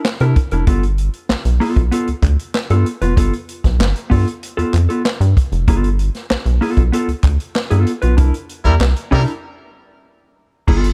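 An energetic funk excerpt at 96 BPM in G mixolydian opens with a swinging big-band drum kit and a mellow, clean electric guitar over C9 and G9 chords, joined at once by crisp group handclaps and a rubbery, bouncy square-wave bass sitting up front. A band accent arrives at 8.2 seconds, and a clear, punchy horn section with slapback echo enters at 8.6 seconds for a brief burst ahead of a break at 9.4 seconds, all in a studio reverb.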